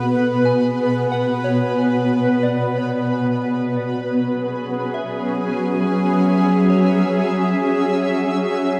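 A dreamy mix soaked in a lush hall reverb, with a cassette-tape character, carries this serene, reflective ambient excerpt in free time and B dorian, cut from a longer piece. Up front, a shimmering pad holds sustained chords from B2 to E5, its slow-attack, wave-folded tone with octave-up shimmer and granular texture blooming through chorus and its own reverb. In the background, a soft FM synth bell plays gentle arpeggios between G#4 and G#5, its pure, decaying notes colored by chorus, phaser and analog delay. The harmony moves from Bm7 to F#5 at 3.6 seconds, and the bell fades out across the full 8.8 seconds.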